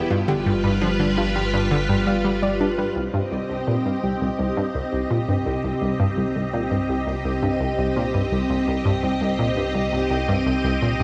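Wet concert-hall reverb and a cassette-tape grain surround this excerpt of ambient, sequencer-driven space music in C minor at 84 BPM, expansive and mysterious in mood. Up front, a lush vintage string machine with phaser and ensemble chorus holds sustained chords, while a bright, detuned analog pluck plays a riff through chorus and tape echo, and a soft, mellow pluck arpeggio sits in the background until 2.9 seconds. A round sine sub bass, present from the start, swells gradually from 3.0 seconds as the harmony moves from G7 to C minor, and at that point a very quiet, bubbling texture of resonant, randomly stepped filter moves joins.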